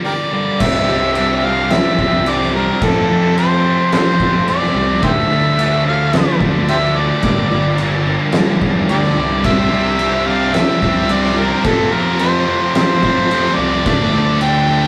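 A straight 4/4 groove from an oversized, low-tuned drum kit, with a fat snare and punchy kick, drives this brooding, angsty stretch of quiet-loud alternative rock, cut from a longer piece. A twangy electric guitar's tremolo arpeggios are gone by 0.6 s, when a thick fuzz guitar and a round, overdriven bass join the riff of a bright high-gain guitar with carved-out mids, while a very quiet tonewheel organ holds sustained chords with key click and slow rotary, and a double-tracked heavy high-gain guitar adds weight from 9.4 s. Up front, an amplified, gritty harmonica carries the melody with tongue slaps and scooped notes, all set in a rough rehearsal-room sound with warm saturation and a small room's reverb.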